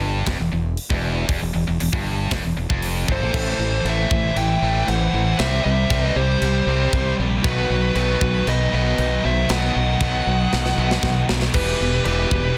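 A dry, dense and heavily limited mix carries this aggressive, heavy metal excerpt in E harmonic minor at 117 BPM in 4/4, where a bright, picked pair of distorted rhythm guitars (one high-gain and set in the background, the other tight) drives riffs over an up-front, growling overdriven fingered bass and a tight, mid-forward studio-room drum kit with a medium-tuned snare, clipped kick, hi-hat, crash and china, its top rolled off. At 3.1 seconds a dark high-gain lead guitar takes the melody, shadowed in the background by a second, warmer lead line, as the band drops into half time over Am, C and B. A drum fill from 10.5 to 11.5 seconds brings the progression back to Em.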